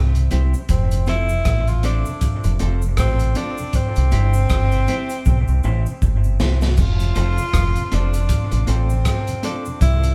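A deep, round fingered electric bass opens this laid-back, sunny roots reggae excerpt at 79 BPM, joined at once by a gritty, saturated breakbeat drum kit with dark cymbals and a tight kick, a very quiet mellow tonewheel organ with key click and rotary speaker, and a close, dry cabasa in the background. A twangy, slightly broken-up electric guitar and a tenor saxophone with light vibrato, both carrying dub echo, come in within the first second, the saxophone singing the lead over a swung sixteenth-note groove as the chords move between C and F. A drum fill from 5.3 to 6.8 s leads into a new section, all heard as a band playing live together in a large studio room with moderate reverb.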